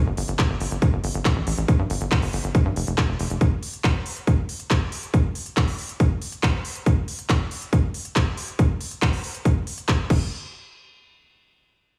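A heavy electronic kick drum sits up front and dominates this driving, intense psychedelic trance excerpt at 139 BPM in a straight 4/4, entering at 0.4 seconds and pounding on until 10.2 seconds. A tight sequencer bass, nasal and punchy with sawtooth and square-wave tones, a filter pluck, fast attack and decaying notes, also sits forward in the mix, playing from the opening until 3.4 seconds and returning briefly near the close. A layered techno drum kit adds crash cymbal, handclaps and smooth hi-hats, its tape-warm sound re-recorded in a small room like the kick's. The bass ranges from F1 to G2, evolving as it drives the track forward. The production is dry, with little reverb, and the piece is cut from a longer work, ending on a short closing passage after 10.3 seconds.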